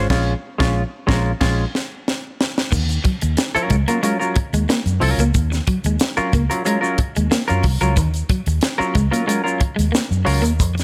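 Funk at 92 BPM in a straight 4/4, hypnotic and driving, moving from Bbm7 to Ebm9 in this short cut from a longer piece. A clean, compressed semi-hollow electric guitar with analog chorus sits up front beside a dark, round, foam-muted fingered bass and a tight, dry drum kit with bright cymbals and a high-tuned snare, the band hitting accents through the opening before a drum fill from 1.4 to 2.7 seconds. At 2.7 seconds a slightly broken-up, picked electric guitar riff with spring reverb enters alongside a grainy, mellow tube shaker in the background, all in a small room with light reverb.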